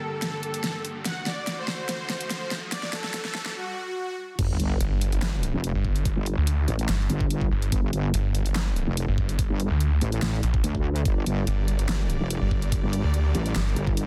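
A growling, distorted saw bass snarls up front through this aggressive, menacing heavy wobble dubstep cut at 144 BPM in half-time, entering just after the drop at 4.4 s in G minor, where a chorused wobble bass and an overdriven, knocking electronic kick arrive. Before that comes a build-up in which a smooth supersaw melody, lush bowed strings with sidechain pumping and a background riser and sub drop gather over a dubstep drum kit with a huge snare that carries on to the end, the strings returning at 11.1 s within a dense, heavily limited master.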